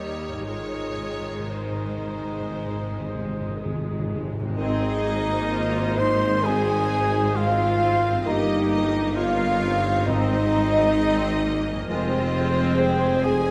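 Rubato in 4/4 at 57-69 BPM, this slow, lyrical Ab major orchestral movement, cut from a longer piece, sets a lush violin section melody over a second, distant violin line, an airy, hollow flute, a cor anglais and a clarinet that drops out at 4.6 s, with intense violas, warm French horns holding chords, a ringing harp in arpeggios, focused cellos, smooth double basses and a hard-mallet timpani fill from 0.5 s, while very quiet trombones and a punchy tuba join at 4.6 s, heard in a wet scoring-stage reverb.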